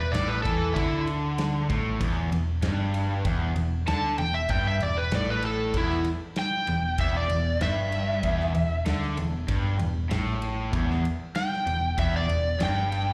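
Heard live through a club's PA, this short excerpt carries a light room reverb around a brooding, smoky blues rock and southern rock groove in the power-trio mould. It moves at 96 BPM in straight 4/4 and sits on E minor throughout. Up front, an overdriven slide guitar played with fingerpicks carries the melody between E4 and A5, its bright tone trailed by slapback echo. Alongside it, a cranked stack guitar, double-tracked and overdriven with its own slapback echo, drives a low riff from E2 to E3, while a round, dark hollow-body short-scale electric bass, picked and amped, holds the bottom between E1 and E2. A big, dark, smooth acoustic drum kit enters at 0.1 seconds with a punchy kick, medium-tuned snare and ride cymbal, sitting lower in the mix in a big room.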